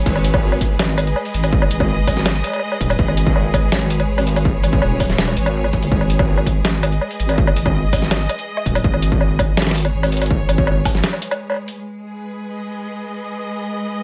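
A deep, wobbling bass and a lush, bowed string section open this dark, tense half-time drum and bass excerpt in G# minor at 164 BPM, the strings holding sustained chords that pump against the sidechain while the detuned, chorused bass sits up front. A distorted electronic kick and a gritty, pitched-down sampler-style kit of snare, hi-hat, crash and woodblock drive the drop with tape-tinged, compressed punch in a fairly dry mix. After a brief break near 11.0 seconds, the drums fall away by 11.8 seconds, leaving the vibrato-rich symphonic strings alone until 14.0 seconds.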